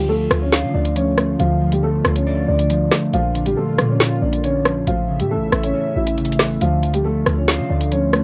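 A half-time drill groove at 138 BPM in D harmonic minor anchors this menacing, tense hip hop excerpt, with an up-front electronic drum kit entering at 0.3 s, its woody snare, rim click and metallic hi-hats carrying a cassette tape grit, while a punchy, tight 808-style bass with a sine tone, noise layer and transformer saturation moves through Dm, Bb and A. A dark, boxy grand piano with long sustain and a cassette tape colour leads the melody, supported by a clean, fingered electric guitar treated with analog chorus. Deep in the background, a smooth sawtooth-and-triangle pad with a sub octave and slow attack holds sustained chords, all within a moderate booth ambience and a dull, home-cassette sound.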